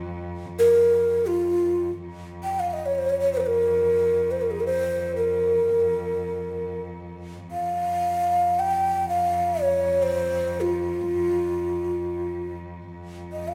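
Heard live in a reverberant stone room, this hypnotic, melancholic fragment of Turkish makam music sets a soft, nasal bowed cello drone low beneath the mix from the start, while from 0.6 seconds a breathy, hollow end-blown ney sits close and up front, carrying the melody in a straight, tongued tone.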